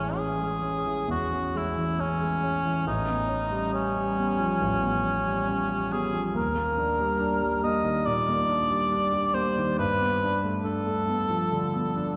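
Set in a wet church acoustic with a long, lingering reverb, this luminous, pastoral excerpt of an impressionist classical duo is cut from a longer piece. The tempo sits around 69 BPM in 4/4, played with a free rubato feel and tuned to A4 = 439 Hz. The cor anglais carries the melody from start to finish across 12.2 seconds, up front and soloistic, with a soft attack and a light vibrato in a classical style. The concert grand piano accompanies throughout in its lower and middle register, sounding intimate and natural with deep bass and audible action noise. Its harmony drifts from Amaj7 to Db7#11/A at 2.9 seconds, then through Ebmaj7 to a closing G9 at 9.8 seconds, giving the passage a gently unsettled, dreamlike colour.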